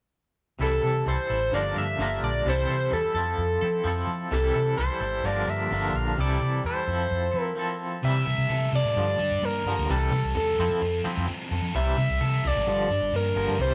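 Wistful yet upbeat, this rock excerpt at 129 BPM in C mixolydian sets a gritty, screaming sawtooth synth lead with vibrato up front over a clean, twangy electric guitar riff shimmering with tremolo and a dark, round, punchy hollow-body bass, cycling through C6, Gm7 and Fmaj7 in a moderate large-room reverb where the band plays live together, until a brief break gives way at 8.0 s to a sludgy, overdriven second guitar playing a riff of its own.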